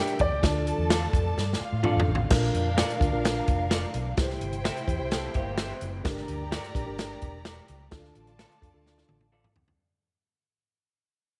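A driving, straight 4/4 pulse at 128 BPM sets this urgent, uptempo 1960s-style soul cut in D minor, with a swinging big-band drum kit up front, its punchy kick, medium-tuned snare, hi-hat, toms and crash sounding airy and polished, and fills arriving at 1.4 and again at 8.9 seconds. A dark, round, foam-muted fingered electric bass anchors the low end, while a mellow tine electric piano supplies clean accompaniment beneath the chord movement from Dm through Bb, C and Gm back to Dm. A clear, slightly worn grand piano carries a brief melody only until 2.0 seconds, while a lush, bowed symphonic string section with vibrato and slapback echo carries a second line throughout. An electric guitar through a small old amp adds slightly broken-up, lo-fi stabs with spring reverb in the background, and a second guitar of the same warm, slightly broken-up character slips in a short riff between 5.1 and 6.0 seconds. 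Set in a small room with light reverb, the passage is cut from a longer piece and fades out from 2.3 seconds onward.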